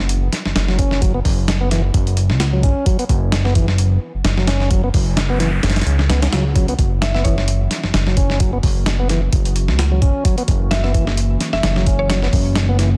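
Breakbeat cut from a longer piece, gritty and energetic at 130 BPM with a light swing on the sixteenths, built over a single F#7 chord. A dusty, sampler-style drum kit with a thumpy kick and tape-warm grit sits up front beside a fat, detuned sawtooth bass with a filter sweep, while a clean tonewheel organ riff with a stopped rotary speaker, tube saturation and tape echo enters at 0.7 seconds. A background noise sweep passes at 5.0 seconds, then a woody FM mallet pluck with chorus and an old-record tint arrives at 7.0 seconds, joined by a very quiet, warbling, nostalgic lo-fi pad, all set in a digital ambience with a dense, heavily limited modern master.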